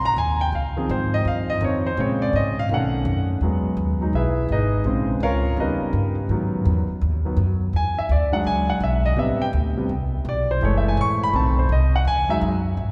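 A clear concert grand piano and a woody pizzicato upright bass open together at 0.0 seconds, launching a brassy, energetic stretch of big band swing at 167 BPM in 4/4 with a firm swung eighth-note feel. The piano carries the solo throughout, its natural tone reaching deep into the bass register while the acoustic upright, with the bite of steel strings, anchors the harmony from below; both sit up front in the mix. The opening bars pass through Absus2, Dbmaj9, Bbm9 and B7 before the music settles into E major at 3.4 seconds on an Emaj7. From there the changes keep moving through A#m7, D#7b13, G#m7, E7, Am9 and F#m7, then B7b9 resolves home to Emaj7. A wet church reverb with a long tail surrounds the pair in a hall-like space until the bass rings out at 12.9 seconds, where this passage is cut from a longer piece.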